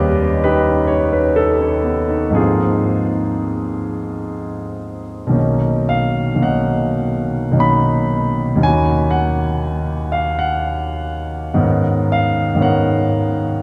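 A clear concert grand piano sits up front, its deep bass and long sustain ringing into a cathedral-like reverb in this serene, dreamy passage of impressionist solo classical piano, cut from a longer piece. Moving in a rubato 3/4 at roughly 49-66 BPM, it drifts from an Ebaug7 and Ab69 opening into B lydian at 5.4 s, where Bmaj9, D#m7 and G#m11 chords unfold across a range from B1 to B5.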